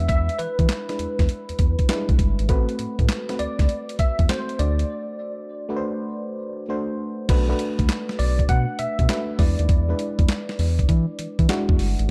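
A gritty, pitched-down sampler-style drum kit sits up front, with a thumpy kick, a high-tuned snare, handclaps, hi-hat and crash cymbal driving this slick, bouncy new jack swing cut at 100 BPM in 4/4 with a 16th-note swing. A round, deep analog bass anchors the low end while a mellow FM electric piano comps through E7, Am69 and D7, then Bm7 and E7. A bell-like tine electric piano with ensemble chorus carries a clean, bright melody in a dark, dry production that reaches a break at 4.9 seconds.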